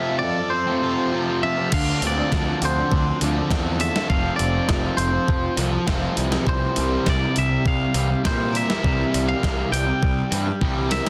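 A straight 4/4 pulse drives this cool, restless indie rock excerpt, which opens on a break where a twangy, clean guitar with spring reverb and slapback echo carries the melody over a crunchy overdriven riff guitar and a bright, compressed fuzz guitar. At 1.7 seconds an up-front, gated 80s digital drum machine with a thumpy kick and gated reverb snare arrives alongside a round, overdriven fuzz bass as the chords move through Dm7, F and C7sus4. A drum fill comes in at 10.6 seconds, and an airy glockenspiel rings in the background at 10.9 seconds, all within a dense, heavily limited, dry-sounding master.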